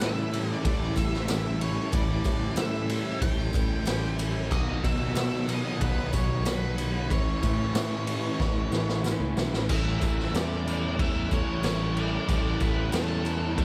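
A raw garage drum kit with a boomy kick and gritty, rolled-off top sits up front from the start of this wistful, hazy shoegaze and dream pop cut at 93 BPM in A mixolydian, alongside a picked electric bass and two overdriven guitars in the background: one crunchy with analog chorus, one biting with reverse reverb. Above them an octave-fuzz lead guitar carries the melody through distortion and analog delay, while a dark, vintage organ-string ensemble holds very quiet sustained chords and a jingly tambourine shimmers behind. A twangy, direct-recorded clean guitar plays bright, compressed arpeggios until a drum fill from 8.4 to 9.7 seconds comes to an end, after which the harmony settles on an A5 chord in the small, ambient room.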